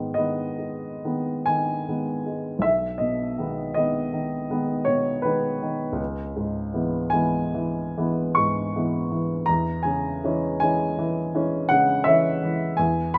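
Heard close and natural in a softly reverberant room, a baby grand piano carries this short passage cut from a longer romantic nocturne. The mood is serene and nostalgic, with the solo piano playing across the full 13.2 seconds and reaching from deep bass notes up into its upper register. The pulse moves in 9/8 with uneven beats and a free, rubato feel that lets the phrases breathe. The harmony shifts through G#m, G#m/B, C#m7 and C#m/E, giving the passage a tender, wistful colour. The warm, up-front piano tone keeps the listener close to the instrument throughout this single unfolding section.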